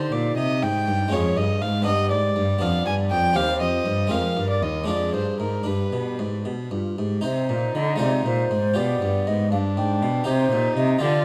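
A woody, airy baroque flute carries the melody over a nasal, gut-strung violin second line, a round single-strung harpsichord in Flemish style, and a reedy cello bass in this solemn, introspective C minor sonata movement in 6/8 at 80 BPM (dotted quarters), tuned to A4 = 441 Hz and cut from a longer piece. All four players sound together from 0.0 to 11.2 s, the opening phrase returning at 7.2 s, with the flute's vibrato and crisp attack adding expression while the cello sits slightly more distant than the others. Close, detailed microphones and light reverb keep the period-style textures clear.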